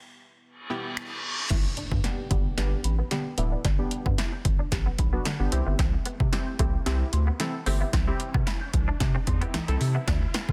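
Upbeat and euphoric, this dance-pop excerpt in G major moves at 112 BPM in a straight 4/4, opening on a bright, sawtooth-edged chord stab treated with chorus, a low-pass filter and sidechain pumping, as a reverse cymbal, riser and impact sit in the background. From 1.5 s a build-up with a drum fill and filter sweep takes hold. A punchy, tape-warm analog drum machine, in from 1.0 s, sits up front with kick, soft-clipped snare, hi-hat, finger snaps and crash over a thick, saturated sub bass that pumps with the sidechain. Meanwhile a woody FM mallet pluck plays arpeggios through tape echo and a twangy, direct-recorded clean electric guitar riff sits behind, the chords shifting from G to C at 5.5 s. A blurred granular cloud pad is barely audible in the closing moments of this dense, heavily limited and nearly dry mix.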